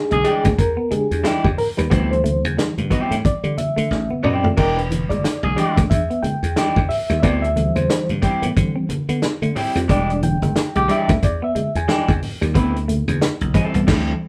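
A reedy electric piano with a fast tremolo leads this gritty, playful funk excerpt, taking a solo of stabbed chords across the whole 14.3 seconds as the harmony moves between E7#9 and D9sus4. A breathy, raspy tenor saxophone sits up front for brief second-line interjections, first heard at 0.1 seconds and again around 5.4 and 10.8 seconds. Beneath it, a dry, growly thumbed slap bass and a punchy soul drum kit with a mid-forward, rolled-off top drive a swung sixteenth-note feel, and the drums play a fill from 3.9 to 4.6 seconds. A dark, slightly broken-up picked electric guitar adds accompaniment, while a clean, fingered semi-hollow guitar plays a riff in the background alongside low-tuned congas struck with soft hands. The band sounds as if it is playing live in one room under moderate studio reverb, and the excerpt closes on a band accent from 13.9 to 14.3 seconds.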